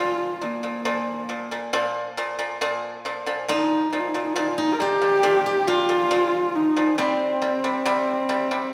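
A roomy scoring-stage reverb surrounds this vast, proud passage of Mongolian folk music, cut from a longer piece and moving at a steady 68 BPM in 4/4 within a Bb zhi mode. Up front, a single husky horsehead fiddle carries the melody with light vibrato, soft attacks, portamento and an airy bow. The pipa, also close and dry, supplies percussive fingerpicked arpeggios beneath it. At 3.5 s a silvery, ringing steel-string zither joins with a second line, and the harmony shifts from Bb5 to C5 at 7.0 s.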